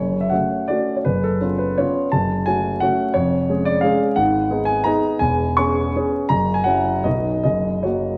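Classical romantic triple-time dance in F# minor, proud and graceful, in which a solo concert grand piano with a deep bass and up-front presence carries dotted rhythms across a brief 8.2-second fragment at a flexible, rubato pulse between 139 and 190 BPM, moving from F# minor through G# minor and C# minor harmonies before settling onto B and then F#, all set in a moderate recital-hall reverb with a layer of vinyl crackle.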